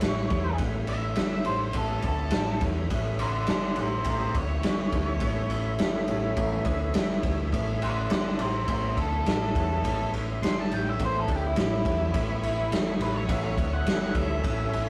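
From the first beat, an octave-fuzz lead guitar tears into a solo over a driving, swaggering blues rock and southern rock groove at 104 BPM in A mixolydian, sitting on a single A chord. Beneath it, a thick, overdriven tonewheel organ holds sustained chords with audible key click, slow rotary speaker and chorus vibrato, while a growling fingered bass adds overdriven punch. A gritty, up-front garage drum kit with a medium-tuned snare, ride cymbal and rolled-off top rounds out the rough rehearsal-room sound, which carries saturation and a moderate small-room reverb in this cut from a longer piece.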